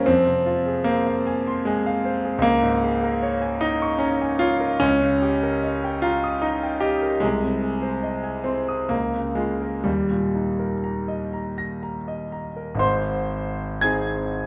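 A lone concert grand piano opens this romantic nocturne, its clear, intimate tone sitting up front with the sound of the key action audible beneath the notes. The mood is serene and dreamy, moving in an unhurried triple metre with a flexible, rubato feel. The piano covers a broad span, from a deep bass to a polished, ringing treble, and its notes carry a long sustain. The harmony drifts from F minor through gentle dominant colours before settling on A-flat at 12.8 s, where a new section begins just as this short passage from a longer piece closes at 14.5 s. A wet recital hall reverb surrounds the instrument and gives it a spacious, lingering afterglow.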